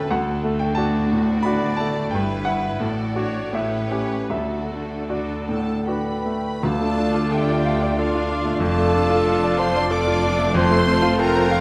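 Classical in a lilting triple metre with rubato phrasing, this passionate, lyrical passage sounds cut from a longer piece. A brilliant grand piano with short sustain carries the melody up front, while in the background lush bowed strings fill out the harmony: violins on a second line, smooth, even violas in accompaniment, and focused, distant cellos over deep double basses. At 5.5 s a rich violin section with a soft attack takes up the melody high above, joined by an airy, hollow concert flute on a second line and a mellow trumpet playing stabs. At 6.6 s the harmony turns minor. With it a close-miked oboe and a roomy clarinet add quiet second lines, a tight, dark horn section sustains chords, and soft-mallet timpani briefly sound a round D. A moderate scoring-stage reverb wraps the ensemble in a spacious glow.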